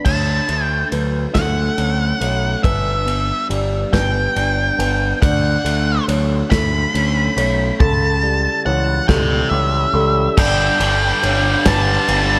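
A dark, fuzzed lead guitar carries the melody up front from the start, over picked arpeggios from a slightly broken-up guitar through a small old amp and a felt-muted upright piano murmuring in the background with audible action noise, all three soaked in slapback and tape echo. A growling overdriven bass and a loose indie drum kit with a tight kick and a rolled-off top join as this euphoric, hopeful post-rock excerpt builds in 6/8 at 47 BPM through chords in D major, all set in a lush hall reverb with a big arena sound. At 10.4 s the arpeggiated guitar drops out and a tight, bright, double-tracked distorted guitar riff takes over on a G chord.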